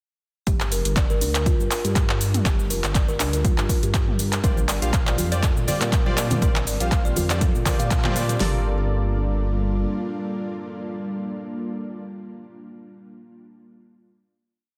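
Afro house with a hypnotic, spiritual mood, built on two layered, overdriven drum kits that drive a punchy four-on-the-floor kick, fat snare, claps, cabasa and hats, while a dark, detuned saw bass rumbles through a syncopated riff and a woody kalimba repeats a 16-step sequence with digital delay. From 4.4 seconds, round analog keys add dotted-rhythm stabs with chorus and a filter sweep, and from 4.6 seconds close, dry congas interlock in the background. An ethereal pad with ensemble chorus breathes under the pumping sidechain before holding the final chord with the keys from 8.4 seconds, all within a dense, heavily limited master.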